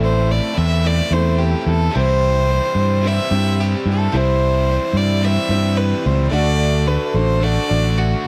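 A straight 4/4 pulse at 109 BPM drives this reflective, wistful folk rock and heartland rock excerpt, where a clear, focused fiddle with light vibrato carries the melody up front over a round, amped electric bass, a boxy ladder-braced acoustic guitar in the background, a double-tracked overdriven electric guitar riff and a very quiet grand piano with long sustain, all moving through Am, C and D in a dry, close 1970s-style studio sound.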